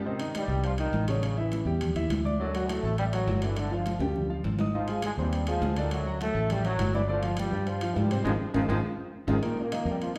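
Fiery and danceable, this salsa excerpt drives along at 205 BPM in a straight 4/4, cut from a longer piece. A punchy, vintage trombone section carries the melody up front, joined by a smooth grand piano in accompaniment, while congas with a bright, thin skin sit in the background and ringing metal-shell timbales add their resonant tone from 0.2 seconds. A round, dark fingered electric bass enters at 0.5 seconds and sits prominently in the mix. Drum fills arrive around 4.0 seconds and again from 8.3 seconds, where the whole band lands a shared accent. The harmony moves restlessly through chords such as Cmadd9, A7, Dadd9 and Ab6 before closing on Bbsus4, all bathed in the lingering reverb of a recital hall.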